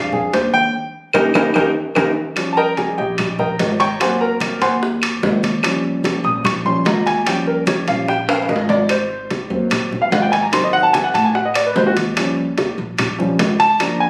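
A present, up-front baby grand piano carries a solo from the first moment in this lively, sophisticated Afro-Cuban jazz excerpt, moving at 147 BPM in a straight 4/4 in Eb mixolydian. Beneath it, a pizzicato upright bass with steel strings gives a growly, thumpy low end. Ringing metal-shell timbales sit forward in a live room sound, while background congas, tight high-tuned bongos played with soft hands, and woody, dry claves fill out the percussion. The band hits an accent from 0.7 to 2.4 seconds, and drum fills break in around 1.8 and 8.3 seconds. The harmony cycles through Eb7 and Ab7, passing through an Adim7 before returning home. Captured on a phone in a large studio space with moderate reverb and compression, the clip is cut from a longer piece.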